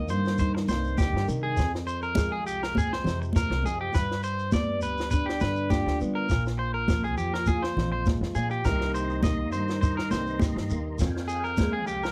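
A dry, close 1970s-style studio sound frames this danceable highlife guitar band, cut from a longer piece and moving at 102 BPM in C minor with a straight 4/4 feel. Up front, a twangy, slightly broken-up electric guitar plays picked arpeggios with slapback echo over a boxy, fingerpicked ladder-braced acoustic guitar and a growly, woody pizzicato upright bass. Grainy shekere comes in at 0.1 seconds, a compact cocktail kit with a high-tuned snare and punchy kick enters at 0.3 seconds, and bright, hard-handed congas follow at 0.4 seconds in the background. At 8.7 seconds a clean tonewheel organ slips in behind with sustained chords through a slow rotary speaker and chorus vibrato.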